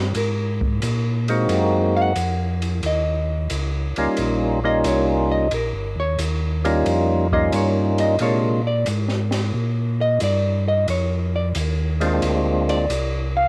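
A greasy, soulful soul jazz organ trio groove swings easily in 4/4, heard as a short cut from a longer piece. A mellow tonewheel organ carries the bass line with a round, dark tone, key click and a slow rotary speaker warmed by tube saturation, sitting up front in the mix. A hollow-body jazz guitar, dark and clean, is marked as soloing across the full 13.5 seconds while also supplying fingered accompaniment. At 1.3 seconds a percussive tonewheel organ enters with the melody, its fat sound shaped by third harmonic percussion and slow rotary, standing loudest of all. An open acoustic drum kit with dark cymbals, a high-tuned snare and a boomy kick sits further back, colored by cassette tape, while the whole has the light reverb and homespun character of a cassette home recording moving through Ab9, Eb9 and Bb9 chords.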